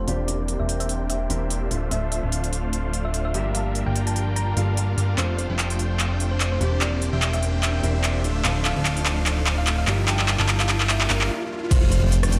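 A swung, half-time groove drives this lush, playful future bass build-up cut from a longer piece: a huge supersaw riff with a low-pass filter sweep and a fat, wave-folded analog bass pump with sidechain beneath a round, tine-like synth pluck carrying dub echo, a soft felt-muted upright piano with audible action noise and a very quiet, breathy pad, while a crisp, up-front big-room dance drum kit of claps, hi-hat, rim click and crash plays a fill from 5.2 s as a very quiet riser rises, and after a brief stop a knocking electronic kick and impact land at 11.7 s.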